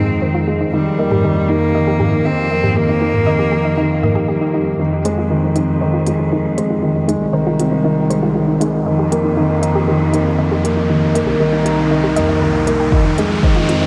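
Piano and strings electronica with a hypnotic, moving feel, cut from a longer piece and set in a dreamy mix soaked in huge ambient reverb. A felt-muted upright piano sits up front with a mellow, intimate riff, while a studio cello section holds a smooth, even bass line with light vibrato and a sidechain pump. A single bowed cello opens with a short, biting melody carrying delay, and a soft, round synth pluck with chorus, cassette-tape colour, pumping and delay spins dark arpeggios in the background under a filter sweep. An organic electronic drum kit enters at 1.1 seconds with crisp hats and toms, overdriven and re-recorded in a large room. The second half becomes a build-up, with an electronic riser arriving at 6.5 seconds and a deep, tape-warm electronic kick landing at 12.9 seconds as the chords return to Fm7.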